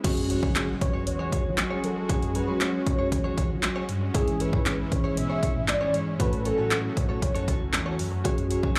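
Overdriven, punchy analog drum machine sits up front in this driving, bittersweet dance-pop piece at 117 BPM in F# minor, its dry kick, snare, hi-hat, handclaps and crash pushing over a deep, full sub bass with octave and a background impact that lasts until 2.1 seconds. A velvety, detuned synth lead with chorus, vibrato and portamento carries the melody from 0.8 to 8.0 seconds, while a tine electric piano with phaser and slapback echo, a bright, direct-recorded clean guitar riff with lush chorus, and a soft supersaw holding smooth sustained chords fill out the F#sus2, C#m/G#, A6 progression, with the piano, supersaw and bass pumping to the sidechain. It sounds like a live gig heard through the venue's PA, with little reverb beyond a touch of club ambience, tuned slightly flat to A4 = 437 Hz.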